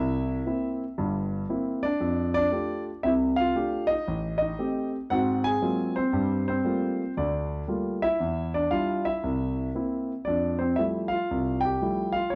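Solo jazz piano at 116 BPM in 4/4, with a swinging eighth-note feel and a sophisticated mood. A concert grand carries the whole piece alone from 0.0 to 12.4 seconds, ranging from G1 up to G#5, its deep bass and short sustain placed up front. The harmony moves through rich extended chords, from C7 and F69 through Am7b5, G#13 and Gm9, then Em7 and C7 before settling on Fmaj9 as a new section begins at 10.3 seconds. A moderate large-studio reverb lends the dark production a sense of space around the instrument. The passage is cut from a longer performance.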